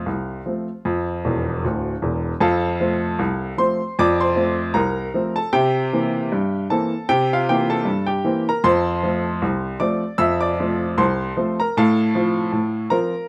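Jaunty and cheerful, this short ragtime piano excerpt strolls along at 77 BPM in 2/4, with a light swing on the sixteenth notes and a home key of F major. A single upright piano carries the whole performance, ranging from a deep D1 up to a high E6, its tone woody, polished and up front. After a brief opening passage, the piano slips in a fill from 1.2 to 2.4 seconds before settling into the main stretch of the tune. The harmony moves from F to C7 and back to F, then lands on F over A near 11.8 seconds. A moderate studio reverb gives the instrument a sense of room while keeping it present, and the clip ends at 13.3 seconds as a cut from a longer piece.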